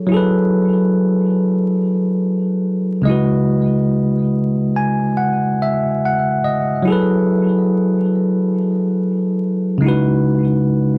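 A laid-back 4/4 hip hop groove with a swung sixteenth-note feel drifts along in this nostalgic, hazy excerpt, carried entirely by a solo electric piano from start to finish. The piano sits up front with a bell-like, bright and clean tone, softened by a low-pass filter and trailed by tape echo as it moves between F#m11 and C#m11 chords. A dark production, a small wet room and a bed of vinyl crackle wrap the piece in a dusty, wistful haze.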